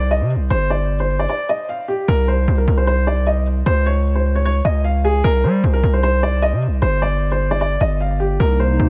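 A half-time 4/4 trap groove at 152 BPM drives this dark, hard-hitting hip hop passage in C minor, cut from a longer piece, with a brief break from 1.3 to 2.1 seconds. A distorted, saturated 808-style bass with a fast attack and a noise layer sits heavy and up front, while a dark, boxy concert grand piano carries the melody close to the listener over a small room reverb and vinyl crackle. Only at 8.5 seconds does a hollow, flute-like pad with chorus arrive, holding soft sustained chords as the harmony moves through Gsus4 and Dbmaj7 colours.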